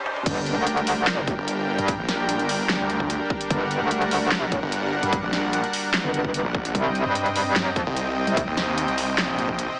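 Through a thin, small-speaker sound with light digital reverb, this chaotic, heavy wobble dubstep excerpt at 148 BPM in a half-time feel opens on a background riser, swell and sub drop before the drop hits at 0.3 seconds, bringing a metallic FM wobble bass with distortion and chorus, a growling, detuned sawtooth bass from 1.4 seconds, a punchy tape-warm electronic kick and an up-front dubstep kit of huge snare, hi-hats, handclaps, toms and crash, beneath a lush, airy supersaw pad pumping to the sidechain as the harmony moves from G minor to C minor at 6.7 seconds.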